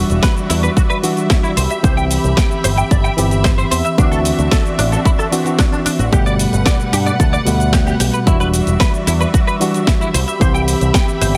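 Heavily compressed with a radio-like sheen, light reverb and a digital ambience, this short nu-disco excerpt runs at 112 BPM in a straight 4/4 and feels groovy and sunny. A punchy, tape-warmed electronic kick sits up front, joined by a layered house kit of hi-hat, shaker and a cracking snare re-recorded in a large room. A picked electric bass with an envelope filter gives the low end a bright, amped bite, while a clean, twangy guitar recorded direct adds a compressed riff through ensemble chorus and delay from 0.2 seconds. A worn, slightly out-of-tune tine electric piano, lightly overdriven through its built-in speakers, carries the accompaniment with delay and sidechain pumping, and a rich, smooth studio string section holds bowed chords with vibrato and sidechain pumping of its own. The harmony moves through Em9, Cmaj7, D9 and Gmaj9 before returning to Em9 and Cmaj7.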